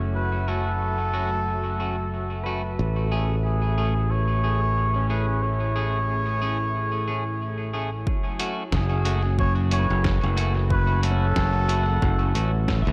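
A bright, growly fingered electric bass sits up front in this meditative, spacious ambient dub excerpt in F# minor at 91 BPM, with a swung 16th feel and tuning set to A4 = 436 Hz. A cup-muted trumpet carries a soft, veiled solo melody through dub echo, while a clean semi-hollow guitar adds echoing picked stabs, a fingerpicked pedal steel plays echoing slide arpeggios in the background, and a detuned sawtooth pad with chorus holds sustained chords moving from F#m to Amaj7. At 8.1 s an overdriven, punchy electronic kick arrives, joined at 8.4 s by a muffled, pitched-down sampler kit of hi-hat and snare with dub echo, in a lightly reverberant space.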